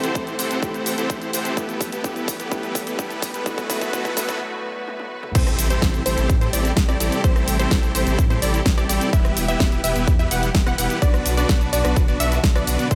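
The clip opens mid-build in festival progressive house: a huge, thick supersaw riff, a warm concert grand piano comping in the background with dub echo, and clear symphonic strings holding bowed chords, all three breathing with sidechain pumping over a pop drum kit with a fat snare filling across the first seconds. A punchy, up-front electronic kick joins at 0.2 seconds, and a very quiet electronic riser and swell sit under the build before a short break. A lush, wave-folded unison pluck slips in at 5.3 seconds playing arpeggios with dub echo, and the piano stops at 5.4 seconds as the drop lands with an impact, bringing in a deep, saturated sub bass. The Am7, Em and Bm progression cycles through both halves, giving the passage a powerful, anthemic lift. The mix carries light digital reverb and a high-pass filter.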